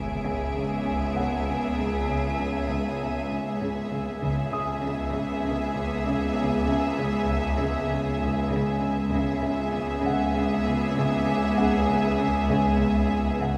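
Eerie and ominous, this cinematic excerpt moves at 98 BPM in C# minor, holding on a single C#m7 chord throughout its 13.6 seconds. Two violin sections play sul tasto with a soft attack, one carrying the melody around E5 and the other a second line near G#4, both pure and floating. A dark, woody viola section fills in accompaniment in the background, while a distant cello section plays a riff and another cello section anchors the bass on C#2. Beneath them, a swarming, detuned drone with a slow attack and granular, evolving character sustains the tension with its own built-in reverb. A very quiet electronic impact and a lush, distant violin texture open the passage, the texture ending by 3.9 seconds, while a very quiet grand piano adds high texture and an intimate double bass section appears briefly at 4.2 and 9.1 seconds. The whole ensemble sits in a wet concert hall reverb.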